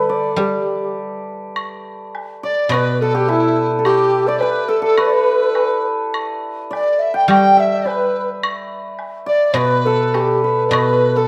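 Light reverb lends a gentle sense of space to this graceful, pastoral excerpt of Chinese traditional chamber music, set in a G gong mode with a rubato feel around 105 BPM in 2/4. A distant low xiao carries the melody with a pure, end-blown bamboo tone and vibrato, while a bright, shimmering hammered dulcimer plays a second line up front and a silvery guzheng, played with fingerpicks, rings out a low accompaniment. A woodblock enters at 1.6 seconds, and at 2.4 seconds a mellow large dizi with a buzzing membrane and straight tone joins the second line.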